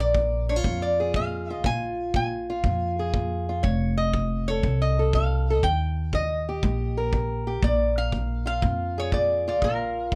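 A swung 4/4 groove at 120 BPM drives this soulful, gritty slice of acoustic country blues in Bb mixolydian, cut from a longer piece and running about 10.2 seconds. Up front, a lap resonator guitar carries the melody with fingerpicks and slide, its tone metallic and nasal. Beside it, an old ladder-braced acoustic guitar is fingerpicked as accompaniment, sounding dark and boxy. A pizzicato upright bass strung with steel gives a woody, thumpy low end, while a kick drum played with brushes enters at 0.1 seconds, tight yet distant and roomy with a rolled-off top. The chords move from Bb7 to F7, then Eb, landing on Bb5 at 7.6 seconds, all set in light reverb with a warm feel.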